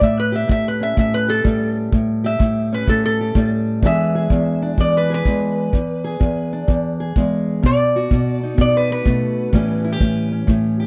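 Acoustic country blues with a laid-back, gritty mood at 126 BPM in a swung 4/4, where a metallic, nasal lap resonator guitar takes a steel-bar slide solo over a fingerpicked steel-string acoustic guitar with a dark, woody, boxy parlour tone from old strings and a tight, natural kick drum played with brushes, all three up front in a dry, close 1970s-style studio sound as the chords move through A7, E7 and B7 before returning to A7 at 9.5 seconds in this short excerpt cut from a longer piece.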